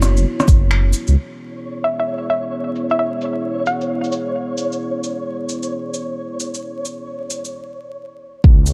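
A dark analog pad with chorus and sidechain pumping, a rumbling detuned saw bass, and tape-warm swung rim clicks, cabasa, shaker and finger snaps under a low-pass filter open this ghostly, melancholic future garage excerpt at 132 BPM in C# minor together. A deep up-front electronic kick joins at 0.5 seconds, and the bass drops out at 1.2 seconds. A hollow, nasal square pluck with chorus and analog delay sings briefly from 1.8 seconds over a grainy, flickering texture, and the bass and kick return at 8.4 seconds after a break, all wrapped in dark production with vinyl crackle and light reverb.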